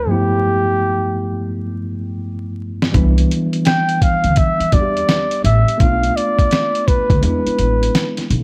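Smoky and mellow, this jazz-hop excerpt moves at an unhurried 84 BPM in 4/4 with a swung sixteenth-note feel, its dark production dusted with vinyl crackle and a light studio reverb. A breathy flugelhorn carries the melody from the first moment, close-miked and up front, its scooped notes lending a relaxed, jazz-style solo voice. Beneath it, a worn tine electric piano, slightly out of tune and lightly overdriven through its built-in speakers, lays down chords moving from G13 to a rootless Cmaj9, then Bm7b5 and E7. A drum fill at 2.2 seconds brings in the gritty, compressed sampler-style kit, with a thumpy kick, medium-tuned snare and hi-hat, just before a woody upright bass joins at 2.9 seconds with low plucked notes. The result feels like a late-night loop, hazy and intimate, with the horn and keys sitting close to the listener.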